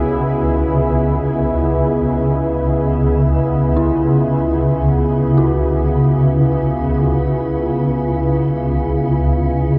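A swarming, granular drone sits up front in this dark ambient fragment, cut from a longer piece. Its detuned sine layers hover low and tense, reshaped throughout by a filter sweep and a moving notch. Beside it, a sweeping resonant pad holds sustained sawtooth chords with slow attacks, chorus and shimmer reverb, evolving through a filter swell. Deeper in the background, an eerie, inharmonic FM bell plays mellow arpeggios in a narrow upper range, its fast, decaying tones softened by chorus, delay and shimmer reverb. All three parts sound together for the full 9.8 seconds in free time, wrapped in a huge ambient reverb that leaves the dark, warm production feeling desolate and unsettling.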